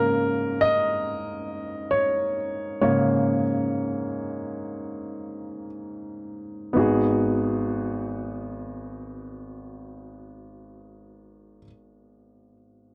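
A clear baby grand piano opens this short pop fragment alone, its emotional, heartbroken mood set in G# minor at a slow 55-71 BPM in 4/4 with a straight feel. Through the first 6.8 seconds the solo piano slows down while holding a G#sus24 chord, its accompaniment ranging from G#1 up to D#5. At 6.8 seconds the harmony settles onto G#m7 as a new section begins and carries on until about 11.1 seconds. The polished piano sits up front in a dry, close, 1970s-style studio sound with little reverb, and the tuning rests slightly under standard at A4 = 439 Hz. Cut from a longer piece, the instrument sounds until 12.9 seconds.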